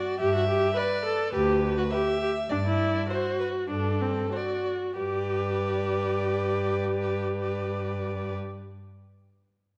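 In a straight 4/4 at 90-108 BPM that slows down over the first 5.0 seconds, this cheerful, lively classical-period movement for string quartet in G major, cut from a longer piece, moves from G to D7/G and back to G, with a focused, bowed violin melody entering at 0.8 s over an expressive second violin with soft attack, vibrato and portamento, a rich, up-front viola accompaniment, and a smooth, even, close cello bass from 0.2 s, all set in a moderate recital hall reverb and colored by worn, warbling old cassette tape with pitch drift.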